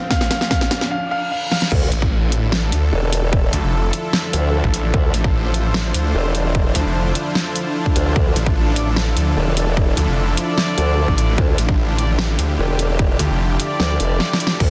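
At the drop at 1.7 seconds, a formant-sweep wobble bass with overdrive and chorus kicks off this menacing heavy wobble dubstep excerpt, and a snarling distorted saw bass, growling and detuned, joins it moments later. Running at 149 BPM in a half-time 4/4 feel in D minor, the piece opens with a brief build-up where a smooth, vintage grand piano carries the melody with delay, while a riser, reverse cymbal and impact sit in the background. An electronic kick drum and a dubstep drum kit with a huge snare and metallic hats sit up front, punchy and tape-tinged, with drum fills marking the transitions and the kick dropping out for the final moments. Beneath the aggression, a lush supersaw pad with 12-bit sampler grit and a blurred, evolving granular cloud pad both pump against the sidechain, holding the harmony from Dm to Dmadd9. A classical-style brass ensemble with light vibrato adds delayed stabs from 8.8 seconds, all within a dry, dense, heavily limited modern master.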